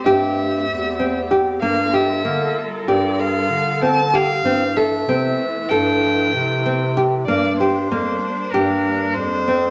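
A clear, bowed single violin carries the melody with smooth, even vibrato at the front of this restless, pensive contemporary chamber piece in 9/8, over fingerpicked classical nylon-string guitar arpeggios, a mellow bass clarinet bass line and rich, soft-attack sustained chords from a studio string section, heard in moderate reverb as the harmony moves from Am7 through Gm9 and Fmaj7/G to Bb6.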